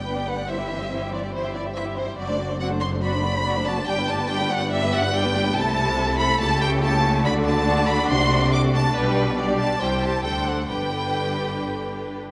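The recording sits in a wet scoring-stage space with a reverb tail of about 1.8 seconds, giving this brief cut from a longer piece a spacious, lush bloom. It is a quick, spirited classical-period movement for string orchestra in a straight four, lively from the first bar. A close, up-front first violin section carries the melody with expressive vibrato, while a smooth, even second violin section traces a supporting line beneath it. Violas fill in a focused accompaniment with a smooth top, and a symphonic cello section anchors the bass alongside a more distant double bass section whose bowing shows touches of portamento. All five sections play together throughout the roughly 12-second passage, moving through a cadential chord progression that settles on G at 10.7 seconds.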